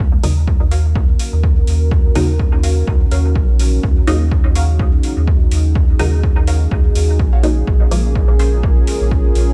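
A largely dry, dark mix carries this meditative, nocturnal dub techno fragment at 125 BPM in Eb minor with a swung 16th feel, where a round, mellow sine sub bass and phased, warbling filter-pluck chord stabs with dub echo pump under sidechain, a fainter detuned stab riff adds lush chorus, overdriven metallic hi-hats and a punchy, up-front analog kick sit in studio reverb, and a moody, evolving, slow-attack sawtooth pad enters at 0.8 seconds as the harmony moves from Ebm7 to Bbm7 at 7.7 seconds.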